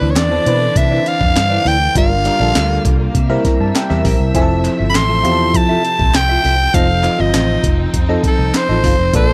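A growling soprano saxophone carries the melody up front in this polished 1980s jazz-funk pop excerpt, its raspy, close-miked tone marked by vibrato, subtone and scooped notes as it moves between A4 and C6. Beneath it, an FM electric piano with a glassy, bell-like attack and analog chorus supplies the accompaniment, stepping forward with a fill from 3.2 to 4.3 seconds, while a mellow, clean electric guitar with subtle chorus plays a riff in the background. A round, punchy, foam-muted fingered electric bass anchors the low end, and a gritty, compressed, pitched-up sampler-style drum kit with a thumpy kick, hi-hat and medium-tuned snare enters at 0.2 seconds alongside hollow, distant group handclaps. A soft-attack string section, bowed with vibrato and portamento, holds sustained chords far behind the band as the harmony moves from Cmaj9 through Gm7 and C7 to Fmaj7 and F7. At a straight 100 BPM in 4/4, the mood is urban and bittersweet, captured in a dry, close 1970s-style studio sound.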